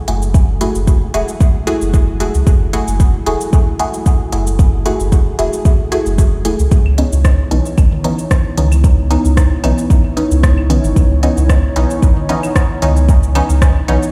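A moody, detuned sawtooth pad with a slow attack opens this hypnotic, deep dub techno excerpt in F# minor at 113 BPM, its chorused chords pumping against the sidechain as the harmony moves from F#m9 to C#m9 at 6.7 seconds. A muted, filter-plucked chord stab with phaser and dub echo sits over a round, tube-saturated sub bass, while an up-front electronic kick anchors a deep house kit of cabasa, smooth hi-hats and rim clicks, all with a gentle swing. Tape-toned electronic claves and toms join in the background from 6.9 seconds, trailing dub echo, and the whole mix sounds as if played on a big sound system in a bare stone room.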